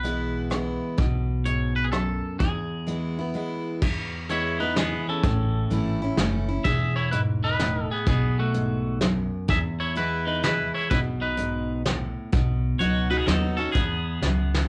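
A lilting three-beat waltz with swung eighths sets an easygoing, nostalgic honky-tonk and classic country mood in this short cut from a longer piece. A soft brush drum kit sits up front with a fat snare, punchy kick, rim clicks, hi-hat and crash cymbal, its rolled-off top colored by cassette tape, and a brief drum fill arrives at 14.2 seconds. An upright bass plucks a woody, thumpy low line beneath a picked steel-string acoustic guitar, whose bright, full-bodied dreadnought picking also carries a cassette-tape tint. Over them, a clean, twangy electric guitar carries the melody up front. The harmony moves easily between E, A and B, and the home recording on cassette has a light reverb and a small-room intimacy.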